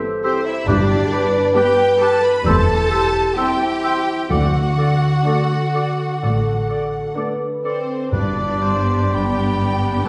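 Classical slow romantic orchestral music, tender and serene, in which a lush, vibrato-rich violin section carries the melody over sustained French horn chords, ringing harp arpeggios, expressive violas and a second violin line, while airy flute, bright clarinet and soft-edged oboe trace background lines, and cellos, double basses and close, dry timpani enter at 0.7 seconds beneath it all, heard from further back in a reverberant scoring stage.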